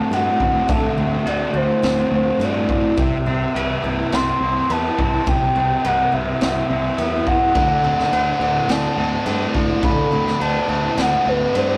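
A rough rehearsal-room recording, thick with tube saturation and a wet small-room ambience, frames this hazy, blissful shoegaze and dream pop excerpt at 105 BPM in a straight 4/4, set in D mixolydian. A pure, breathy sine lead carries the melody between B4 and C6, its soft attack and warbling vintage tone colored by chorus, tape echo, vibrato and portamento. Beneath it, a dark fuzz guitar plays a riff up front, a twangy clean electric guitar plays its own riff in the background, and a boxy, shimmering twelve-string acoustic picks octave-doubled arpeggios. A growling fingered bass with overdrive and a gritty garage drum kit, with a boomy kick, rolled-off top and pumping room sound, come in at 0.1 seconds. The chords move from D7 to Cmaj7 and back to D7, and at 7.5 seconds a biting, bright, double-tracked overdriven guitar joins with a riff between D3 and D4.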